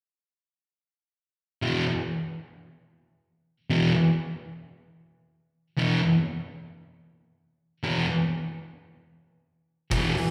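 A thick, double-tracked fuzz guitar dominates this raw, gritty garage rock fragment, cut from a longer piece, playing a distorted, picked riff from 1.6 s that centres on an E5 chord and stays in a low range between E2 and E3. The electric tone is warm and saturated with fuzz, and a slapback echo gives the upfront guitar a rough doubling. Only at 9.9 s does an oversized, low-tuned acoustic drum kit break in with hi-hat and a punchy kick, sounding saturated and gritty in a bright, pumping stone room before the fragment ends at 10.3 s. The whole thing has the feel of a live gig heard through the venue's PA, with moderate plate reverb, a touch of small-room ambience and the echo of a recital hall around it. Tuned to A4 = 442 Hz, it plays like a rough snapshot of a duo or trio in full flight.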